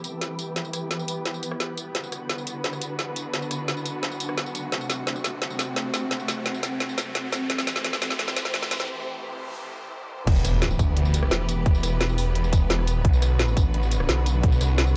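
Dark and mechanical, this excerpt of technical drum and bass at 173 BPM in E minor builds over bright, lush bowed strings under a filter sweep and a blurred granular pad, with a woody-snared, metallic-hatted kit driving through a fill and a break with a noise sweep, before the drop at 10.3 seconds brings a tight kick and a swirling, phased, detuned saw bass up front over Em and Bm.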